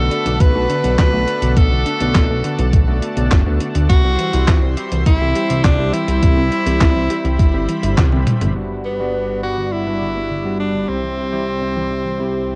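A clear, up-front tenor saxophone carries the melody over a lush, detuned unison pad, a warbly dusty pluck playing quiet arpeggios, muffled electric grand piano stabs and a glossy chorused synth bass in this nocturnal, moody synthwave excerpt at 103 BPM in straight 4/4. A thumpy electronic kick and a clean 12-bit drum machine with handclaps, hi-hat, a filtered snare and toms drive the groove until a drum fill and band accent at 8.0 seconds, after which the drums drop out and the chords move from Bm7 and C to Gmaj7. The saxophone and piano carry tape echo, and the whole mix has the dry intimacy of a home cassette recording.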